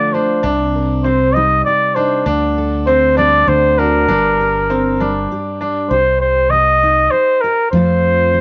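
Reflective and melancholic, this acoustic folk piece for a small band moves at 99 BPM in 3/4, with a clear, up-front flugelhorn singing the classical-style melody with light vibrato over a full-bodied fingerpicked steel-string guitar, a bright, woody upright piano playing long-sustained arpeggios until 5.9 s, and a dark, round fingered electric bass entering at 0.4 s, set in a small room with light reverb as the chords pass from Cm7 through D7 and Gm to Cm and F.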